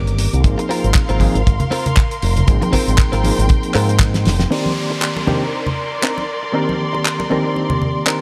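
Lightly reverberant studio sound frames this sleek, cosmic nu-disco fragment at 118 BPM in C minor, where a gritty, overdriven reed electric piano with fast tremolo and lush, bowed strings carrying 12-bit sampler grit both pump with sidechain, a dry, tight kick and a damped 70s kit with dark cymbals, fat snare and handclaps drive the groove, a bright, direct-recorded clean guitar riff rides over hard-handed congas, the warm, envelope-filtered fingered bass stops at 4.4 seconds during a drum fill, and from 4.5 seconds filter sweeps on guitar and piano join an electronic downlifter as the harmony shifts from Ab69 to Cm9.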